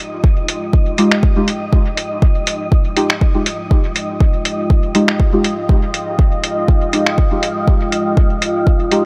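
Hazy and meditative, this short cut from a longer dub techno piece moves at 121 BPM in 4/4 with a light swing on the sixteenths, resting on an F minor ninth chord. A deep, moody pad of detuned unison sawtooth and sine layers with a sub octave holds sustained chords from the start, thickened by chorus and its own reverb and breathing with sidechain pumping. Alongside it, an airy, wind-like tuned noise texture drifts quietly in the background, also reverberant and pumping. An overdriven, up-front electronic kick enters at 0.2 seconds, joined by a muffled, pitched-down sampler-style kit of finger snaps and hi-hat carrying dub echo. From 1.0 seconds a soft, dark chord stab with a fast attack and short decay repeats through chorus, phaser and dub echo, a filter sweep running across it while the whole sits in a digital ambience.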